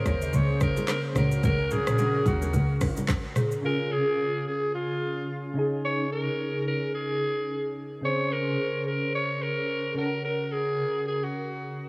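A dreamy, reverb-soaked hall sound surrounds this sunny, romantic afrobeats excerpt in Db major, moving at 109 BPM in 4/4 with a swung sixteenth-note feel. Up front, a raspy, growling alto saxophone with vintage grit and vibrato carries the pop-style solo melody through an analog delay, alongside soft, round electric-piano-like synth keys that play dark, decaying accompaniment colored by chorus and phaser. Through the opening 3.6 seconds the full band joins them: a detuned sawtooth analog pad holds sustained chords in the background, a woody, buzzing balafon plays a dry riff with soft rubber mallets, and a bowed double bass sounds smooth and distant with steady vibrato until about 2.9 seconds. An electronic afro-pop kit with a deep kick, metallic hats, handclaps, rim clicks, shaker and toms drives the groove, while bright, compressed bongos and congas sit very quietly beneath. After that point, the saxophone and synth keys continue alone until 11.9 seconds over chords that settle from Bbm7 and Gb onto Db-based harmonies.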